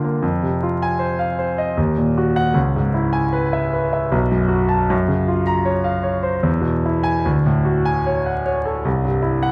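In a flexible, rubato triple metre, this short cut from a longer impressionist piece for solo concert grand piano feels luminous and serene. The piano sits up front with a clear, polished tone and deep bass, drifting through colourful harmonies such as Gbmaj7#11 and Dmaj7#11 before reaching C at 8.9 seconds. Close, detailed miking captures it in a moderate recital hall reverb, with vinyl crackle beneath.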